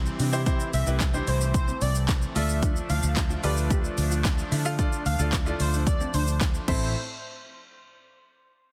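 A dense, heavily limited modern mix with light reverb opens this bittersweet, driving dance-pop drop at 111 BPM in a straight 4/4, a short cut from a longer piece. An overdriven house drum kit sits up front, with a punchy kick, cracking snare, bright hats, handclaps, shaker and crash, while a dark, round, foam-muted electric bass pumps to the sidechain underneath. A shimmering, retro pulse-width pad holds sustained chords with a slow attack and a sub octave, breathing with the same pumping. A clear concert grand piano with deep bass and short sustain supplies accompaniment, and a mellow, clean, compressed electric guitar plays a subtle-chorused riff in the background. From 0.7 s an airy, dreamy lead with detuned unison, vibrato and dub echo carries the melody over a progression moving from C to Dm and on to Am before the music cuts off at 7.0 s.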